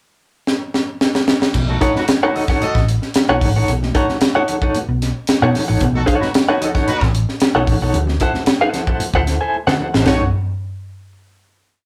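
A rough rehearsal-room recording with a moderate studio ambience frames this short, gritty and strutting funk piece in a straight four. A crisp fusion drum kit sits up front with a high-tuned snare and tight kick, opening with a fill at 0.5 seconds in the pickup bar and playing a syncopated groove with ghost notes, crash, hi-hat and toms. From 1.5 seconds the groove settles on a B9 chord, carried by a dark, round, punchy hollow-body short-scale bass playing a syncopated riff anchored on the downbeat with muted ghost notes, while ringing, high-tuned congas with a vintage, band-limited tone sit in the background with hard-handed syncopation. A clean, compressed electric guitar, recorded direct and placed up front with tremolo, picks clipped funk chords, and a distant, roomy horn section with light vibrato plays short pop-style riffs as a second line. The harmony moves to D9 before another drum fill leads into a final B9 chord at 10.1 seconds.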